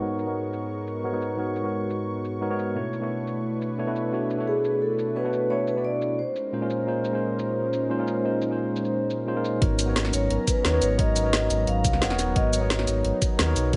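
Lightly reverberant, this soulful, rolling liquid drum and bass excerpt at 175 BPM opens on a gritty, filter-swept tine electric piano with delay and a smooth, chorused analog pad pumping under sidechain over G#m11, Bm11 and A#m11 chords, with a layered, overdriven kit of woody snare, bright hats and shaker up front, a ringing vibraphone melody with tape echo entering at 4.5 seconds, and a drop at 9.6 seconds that brings in a knocking electronic kick and a deep, full sine sub bass.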